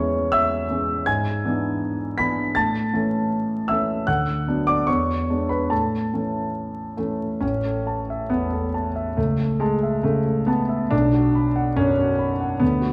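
In a flexible, rubato 2/4 pulse drifting between 67 and 82 BPM, this lyrical, hopeful romantic character piece for solo piano unfolds in A major, a short excerpt cut from a longer work. The concert grand sits up front with an intimate, natural tone, deep bass reaching down to A1, and audible action noise, while its lines climb as high as B6. A wet recital hall reverb and a vinyl crackle surround the playing as the opening phrase settles from C#m/E through E7/G# onto A, before a contrasting passage begins at 7.4 seconds and moves through A/C# to close on Bm at 10.9 seconds.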